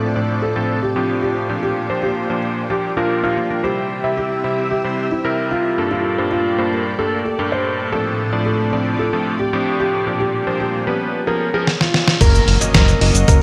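Bathed in a lush hall reverb with bright 1980s-style digital sheen, this romantic, danceable italo disco excerpt at 112 BPM opens with a dark, intimate concert grand piano carrying the melody through a delay over mellow, vintage string-machine chords and clangy, chorused electric grand piano stabs with gritty sampler character, until a compressed, fat-snared sampler-style drum kit fills in at 11.7 seconds and a detuned, saturated sawtooth analog bass, a thumpy electronic kick and a very quiet electronic impact arrive at 12.2 seconds.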